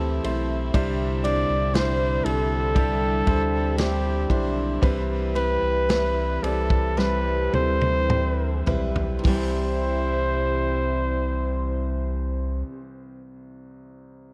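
An up-front flugelhorn with light vibrato and scooped notes carries the melody in this hopeful, emotional pop ballad fragment, over a polished grand piano, a round sub bass, a bright brass ensemble holding sustained chords in the background, picked acoustic guitar arpeggios and a natural country drum kit with a punchy kick, whose fill from 7.0 to 9.2 seconds closes a gradual slowing before the piano rings on alone until 14.3 seconds, all colored by light small-room reverb and a worn, warbling cassette-tape pitch drift.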